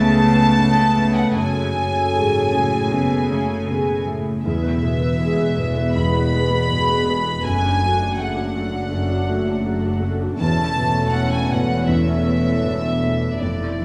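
A clear, sul tasto violin section carries the melody of this hopeful, uplifting cinematic excerpt in A major at a rubato 80 BPM, joined by a second violin line with a soft attack, while a dark viola section, a felt-muted upright piano with audible action noise, a distant French horn section with light vibrato, a very quiet thumb-plucked concert harp ringing out arpeggios, a pure-toned cello section and a warm double bass section support it through chords moving from Aadd9/C# to F#madd9, E, D/F# and Aadd9/E, set in a wet concert hall reverb.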